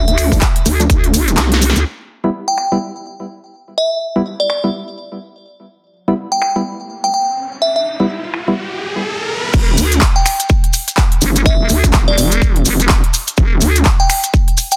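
Gritty and aggressive, this swung bass house passage at 125 BPM in E phrygian opens with a crystalline FM synth bell melody carrying chorus and digital delay, a nasal, resonant vowel-sweep wobble bass, an overdriven electronic kick, grainy maracas and punchy big-room drums of snare, crisp hi-hat, handclaps, finger snaps and crash cymbal. Hollow, dark organ stabs with sidechain pumping join at 0.3 seconds and carry on through the middle stretch after a drum fill at 1.4 seconds, while a riser builds from 7.1 seconds into a drop at 9.5 seconds, where the wobble bass, kick and maracas return in a dense, heavily limited mix.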